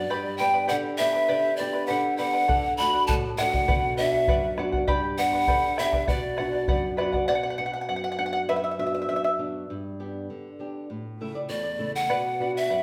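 A breathy bamboo pan flute leads this melancholic, wistful Andean folk fragment, sitting up front with vibrato, tongued attacks and a chiffy edge to its lifted highs. Beneath it, a charango fingerpicks shimmering double strings, some doubled at the octave, while a dark flamenco guitar is fingerpicked throughout. A deep, close and dry bombo joins at 2.5 seconds and drops out at 7.3, when the flute has already fallen away and the charango steps forward for a solo. The nylon-string guitar slips in a short fill before the flute returns at 11.5 seconds, over chords moving through G, D, Bm and A. The ensemble plays live together in one room, wrapped in a generous, wet studio reverb.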